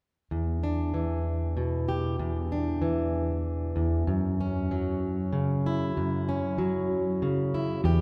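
A dark, full-bodied fingerpicked steel-string acoustic guitar with old strings sits up front from 0.3 seconds, moving from E7(no3) to F#5 at 4.1 seconds in this melancholic, intimate folk fragment taken from a longer piece. The slow 6/8 pulse at 64 BPM in dotted quarters has a straight feel, and the playing is bathed in the long, wet reverb of a church or concert hall. Only at 7.8 seconds does a growly, round fretless electric bass with a woody, hollow-body tone enter briefly on a low E.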